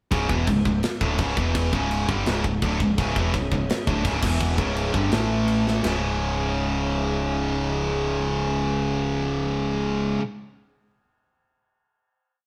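Two bright, high-gain electric guitars open this short, aggressive heavy metal piece together, hammering out a picked power-chord riff in C# minor at 168 BPM in a straight 4/4, moving between C#m, E5 and A5. Beneath them, an overdriven picked electric bass drives eighth notes that double the guitar riff, while a tight acoustic metal kit lays down a half-time groove of tight kick, medium-tuned snare and bright crash and ride cymbals. At 3.0 seconds a chamber string section slips in at the back, bowing sul tasto sustained chords with light vibrato that give the aggression an epic, intimate shade. A drum fill at 5.7 seconds leads into a final C#m chord at 5.8 seconds, where the drums drop away and the guitars, bass and strings ring out together. The whole band sounds live in one stone room, with a moderate reverb that adds a hard, solid space around the up-front guitars.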